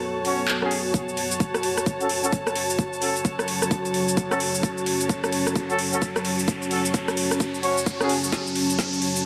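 Aggressive and swaggering, this bass house cut sits on F# minor at 130 BPM in 4/4, with a 62% swing on the sixteenths giving the groove its strut. A deep, moody sawtooth pad with a detuned unison and sub octave holds sustained chords under chorus and its own reverb, while a close, intimate chamber string section bowing sul tasto adds an up-front texture, both pumping against the sidechain. A distant, roomy horn section fires stabs through a low-pass filter and digital delay, and filter sweeps on both the horns and the pad drive a build-up from 0.9 seconds onward. The overdriven garage kit brings a woody snare, metallic hats, handclaps, rim clicks and shaker, joined by a tight, tape-tinged electronic kick. An electronic riser creeps in behind from 3.8 seconds, a drum fill arrives at 8.3 seconds, and a moderate, lush hall reverb wraps the mix in digital ambience.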